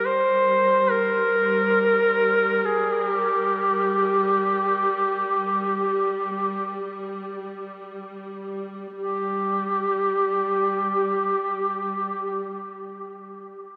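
In free time that slows over the first 9.0 seconds, this solemn, longing Caucasian folk lament sets a clear, up-front solo duduk, singing with vibrato and scooped notes, over a rich, biting drone from a bowed string section, both playing from 0.0 to 12.5 seconds and drenched in a huge reverb that places them in a vast, echoing space.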